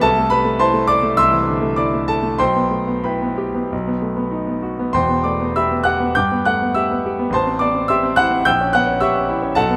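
Classical romantic character piece for solo piano, bittersweet and brooding in a flexible rubato, heard as a short cut from a longer work where a brilliant, up-front concert grand ranges from deep bass to sparkling highs, captured by close, detailed microphones in light reverb as its harmonies drift through a shadowy diminished chord at 8.5 seconds.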